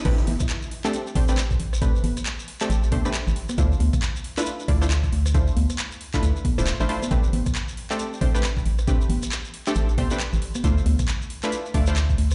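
The sound is dry and close, yet it carries the boom of a big sound system in a bare room, with a dulled top end that rolls off above 10.9 kHz. This moody, bouncy UK garage cut, a two-step groove at 136 BPM in A minor with a 60% swing on the 16ths, drops straight in at 0.1 seconds and holds that energy throughout. An organ-like FM bass sits up front, hollow and dark, with a fast, percussive attack that decays quickly, while an overdriven electronic kick knocks hard beneath it. A layered garage kit, also overdriven, adds metallic hi-hats, handclaps, rim clicks, congas and crash cymbal, and a faint, grainy acoustic shekere rattles along from the very start. Above them, a punchy sawtooth chord stab with a detuned, wave-folded filter pluck is coloured by chorus, cassette tape and dub echo as it moves between Am11 and Dm9.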